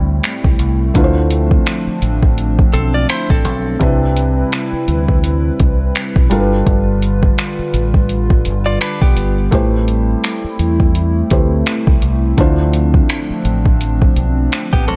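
A muted upright piano with audible action noise, a hollow, flute-like pad thickened by chorus and a dark, round, punchy fingered bass open this sensual, longing contemporary R&B fragment, joined at 0.2 seconds by an up-front electronic drum kit of soft kick, finger snaps and overdriven hi-hats, while a clean, compressed electric guitar adds brief delayed arpeggios from 2.7 seconds over a swung Am7, Dm7, Cmaj7, G7 progression in a dry, close mix.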